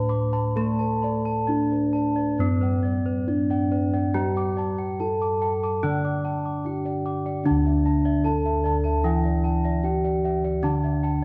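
Shimmering and ceremonial, this gamelan fragment in D slendro at 64-76 BPM in 4/4 sets a mellow, soft bronze metallophone melody played with padded disc mallets over a metallophone accompaniment struck with a bright, airy horn mallet, while round, up-front bossed gongs and a dark, smooth wooden-mallet metallophone ripple in high arpeggios above beating, mid-forward bossed gongs carrying the bass, all heard through a moderate 1.7-second stage reverb in a dusky production that moves into a new section at 7.5 s.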